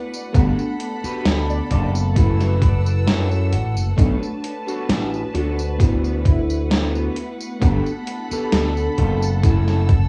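A mellow, dark FM electric piano warbling through chorus, cassette tape and analog delay opens this melancholic, woozy vaporwave passage at 66 BPM alongside sustained, biting bowed strings, soon joined by a gated 80s drum machine with hi-hat, tambourine and a gated-reverb snare, a thumpy up-front electronic kick with 12-bit sampler grit, a growly, punchy slap bass through an envelope filter, and a slightly broken-up electric guitar riff in the background, while a clean electric guitar fill appears at 2.2 seconds and a velvety, detuned synth lead carries the melody from 1.5 seconds over a drifting Gmaj9, F#m7, Bm7 and D6 progression, all wrapped in hazy home-cassette ambience.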